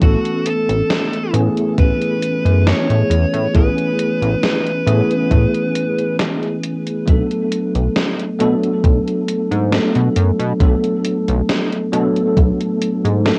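Set in a straight 4/4 pulse, this dreamy, faded vaporwave excerpt rides on a thumpy, up-front electronic kick and a sampler-style 80s drum machine whose hi-hat and gated-reverb snare carry a tape-warm, small-room character. A glossy, chorused synth bass mixing pulse and sawtooth tones with a plucky filter sits forward beneath a bell-like, bright electric piano treated with ensemble chorus and tape echo, the harmony moving from Amaj9 to Bm7 at 7.1 seconds. A dark fuzz lead guitar, distorted and cassette-worn with tape echo, carries the melody only until 6.2 seconds, all within a light reverb and home-cassette recording.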